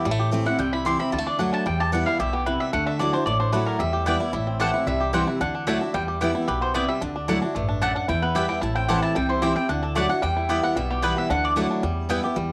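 This short cut from a longer bluegrass piece has the homespun grain of a cassette home recording, set in a moderate studio reverb. At a brisk 224 BPM in straight 4/4 and E minor, the music feels driving and rustic, cycling through Am, C, Dadd9 and Em. A bright, full-bodied picked steel-string guitar sits up front with audible finger squeak, colored by tape and plate reverb. The upright bass enters at 0.1 seconds with a thumpy, gut-string pizzicato. A mellow picked mandolin carries the high melody from 0.5 seconds, its double strings ringing through plate reverb, while a twangy, percussive fingerpicked banjo plays a melody lower down. From 4.1 seconds a second mandolin adds woody stabs, also shaded by tape and plate reverb.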